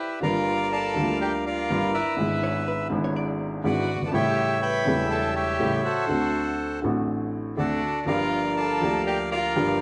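A band accent opens this passionate, nostalgic tango fragment, where a reedy, bright bandoneon carries the melody up front in a loose, rubato 4/4 over a woody upright piano accompaniment that enters at 0.2 seconds and moves from Gm7 through E7/G# and A7 to D7 before returning to Gm7. Behind them, a single bowed violin plays a soft-attacked second line with vibrato and portamento, while a dark, clean, compressed hollow-body electric guitar adds picked notes with slapback echo until 3.5 seconds. The sound sits further back in a large studio with moderate reverb, its top end rolled off.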